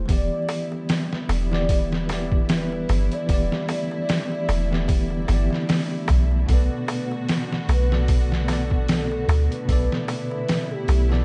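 Brooding and melancholic, this trip hop excerpt moves at 75 BPM in 4/4 with a 16th-note swing, settling in E minor as the harmony shifts from Em7 to Bm7 at 6.5 seconds. A gritty, pitched-down sampler-style drum kit sits up front with a thumpy kick, medium-tuned snare and hi-hat, bathed in studio reverb, while a close, dry darbuka with a clay shell and natural skin adds acoustic texture from the background. Underneath, a soft 808-style bass holds a deep, round, decaying low end, also placed up front. A bell-like tine electric piano carries the accompaniment with a bright, clean tone colored by harmonic tremolo, tape echo and 12-bit sampler grit, and a studio string section plays sustained chords, bowed sul tasto with light vibrato and an intimate, ensemble feel. Above it all, a pure, breathy sine lead glides through portamento with chorus and dub echo, and the whole recording carries a dusting of vinyl crackle in a dry, dark-topped sound.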